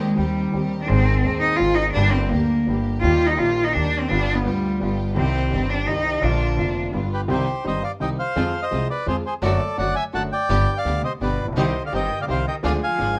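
A moderate studio reverb gives this sultry, dramatic tango fragment a sense of space, and it is cut from a longer piece. It moves at 169 BPM in 3/4 with a rubato feel, and the opening belongs to a bowed solo cello whose vibrato and portamento sound expressive yet somewhat distant, even though it sits up front. Beneath it, a vintage-toned concert grand piano with deep bass and a smooth touch carries the accompaniment. A dark, woody pizzicato upright bass anchors the low end, while a lush symphonic string section adds background stabs. At 7.1 seconds a reedy, mid-forward bandoneon takes the melody just as the harmony settles into C harmonic minor, and the cello, having dropped out at 6.9 seconds, returns as a second line at 11.0 seconds. The chords travel through shapes such as Cm, Fm, D/F# and G7 before closing on Ddim.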